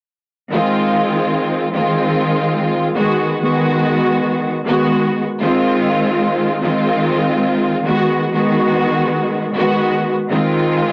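A rich, bowed studio string section plays alone from 0.5 to 10.9 seconds in this dark, tough hip hop clip, its lush, vibrato-laden ensemble sound sitting up front yet distant through cassette-tape coloring and filtering, swaying with a swung feel over alternating Fm7 and Abm7 chords inside a dry, gritty recording with light reverb and transformer saturation.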